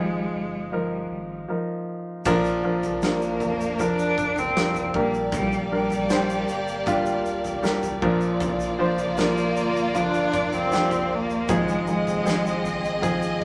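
Tender and emotional, this pop ballad excerpt moves at 78 BPM in 4/4 in Bb mixolydian, with a bright, focused bowed cello carrying the melody up front over a polished baby grand piano accompaniment and a deep, full sub bass with octave sitting in the background. At 2.3 s a lush, expressive violin section enters with a second line, joined by a huge acoustic arena drum kit with a punchy kick, medium-tuned snare, toms and crash, plus a grainy, mellow tube shaker tucked far back. Vibrato colours both the cello and the violins, and a wet studio reverb gives the whole a roomy, natural sheen.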